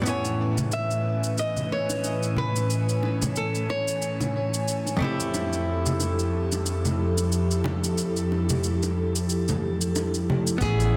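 A breathy, detuned pad with chorus and shimmer reverb opens this smooth, sunny sunset chillout excerpt at 91 BPM, alongside a dark, clean hollow-body jazz guitar and a fingerpicked flamenco guitar melody that drops out at 5.0 seconds, as the harmony moves from Amaj9 to Fmaj9. Overdriven electronic cabasa and metallic hats sit with distant, ringing bongos and congas in the background over a swung sixteenth-note feel. At 10.6 seconds a woody pizzicato upright bass and a punchy, very quiet electronic kick join the returning flamenco guitar, all within a moderate plate reverb and a dense, heavily limited modern master.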